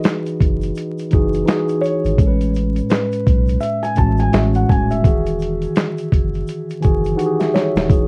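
A swung, gritty sampler-style drum beat with thumpy kick, snare, hi-hat and handclaps drives this dreamy, nostalgic lo-fi hip hop excerpt, joined from the start by a mellow, filtered tine electric piano moving between Emaj9 and Amaj9 and a very quiet, grainy egg shaker, with a round, deep dub sub bass entering at 0.4 s, a dark, felt-muted upright piano melody with audible action noise, plate reverb and analog delay arriving at 1.8 s, a drum fill at 7.2 s, and worn cassette warble, pitch drift and vinyl crackle coloring the whole recording.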